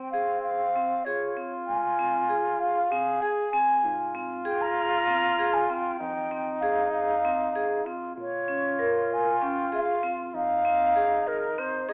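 Contemporary instrumental chamber music in 7/8, pensive and hypnotic, cut from a longer piece and heard through a light reverb with a telephone-like sound. An airy, expressive baroque flute carries the melody up front with vibrato, while a nasal French horn in a straight mute, its tone smooth on top, plays a second line just beneath it. Metallic, ringing vibraphone arpeggios with a slow motor vibrato and a boxy small-room tone sit behind them over a clean tine electric piano bass, as the harmony moves from Dbmaj7 through Ab and Fm7 before turning toward Bbm at 8.2 seconds.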